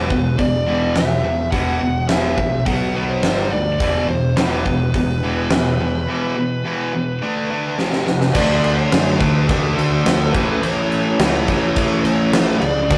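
Rough and saturated, like a rehearsal room ringing with stone reverb, this menacing, aggressive hard rock excerpt in E minor at 105 BPM sets a dark, high-gain lead guitar melody over two bright distorted rhythm guitar riffs in the background, a round, fuzzy picked bass and an up-front, big-room drum kit with a fat snare and punchy kick, whose fill at 7.8 seconds ushers in a double-tracked, overdriven semi-hollow guitar riff with phaser at 8.3 seconds.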